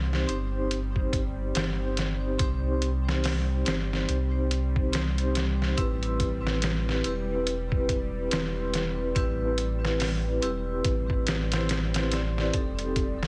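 A swung 16th-note groove in 4/4 at 71 BPM opens this dark, brooding trip hop fragment, with a sampler-style drum kit entering at 0.1 s. Its thumpy kick, medium-tuned snare and hi-hat sit up front, pitched down, muffled and compressed, with a vintage 12-bit grit. A deep, round sine sub bass with a fast attack holds sustained low notes beneath. Up front, a ringing, metallic vibraphone played with medium mallets carries the accompaniment through a slow motor vibrato, tremolo and tape echo. From 0.4 s, a tense, nasal, string-like drone on G3 sits in the background, evolving with detuned sawtooth layers, a noise layer, vibrato and its own reverb. The harmony moves from Cm to Am7 and then F7, all framed by light reverb and a heavily compressed, radio-like sound.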